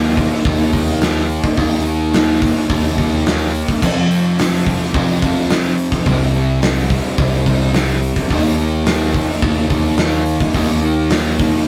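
Hazy and wistful, this short shoegaze and dream pop rock cut sets a double-tracked fuzz guitar riff moving through Eb5, F5 and C5 over an up-front overdriven picked bass and a gated 80s drum kit with a fat snare, punchy kick and bright cymbals, all captured in a rough, saturated rehearsal-room sound with a small room's ambience.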